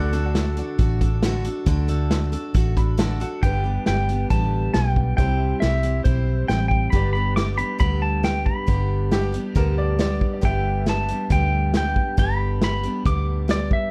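A straight 4/4 beat at 137 BPM drives this heartfelt, nostalgic slice of honky-tonk and classic country in G major, cut from a longer piece. A vintage drum kit with a tight kick, medium-tuned snare and hi-hat sits in a dark, smooth studio room, while a foam-muted fingered electric bass holds the low end up front with a round, punchy tone. Underneath, a full-bodied picked jumbo acoustic guitar and a detuned, jangly upright piano in the background fill out the accompaniment, and a brilliant, woody second piano with tape echo adds short-sustained phrases at the start and again around 9.1 seconds. After a honky-tonk piano fill from 2.5 seconds, the pedal steel guitar enters at 3.4 seconds to carry the melody, twangy and clean under fingerpicks, with slide and volume swells as the chords move from D to G, C and back to G. The production is dark and warm overall with light reverb.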